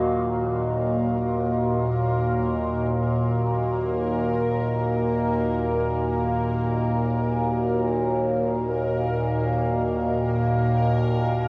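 Unfolding in free time, this ominous, vast dark ambient drone fragment sets a brilliant, resonant overtone-sweeping drone with phaser and a moody, detuned analog pad of sustained chords up front, with a bubbling stepped-filter texture of random sawtooth filter steps beneath, all three sounding from 0.0 s to 11.5 s and bathed in a huge ambient reverb and the warbling pitch drift of worn cassette tape.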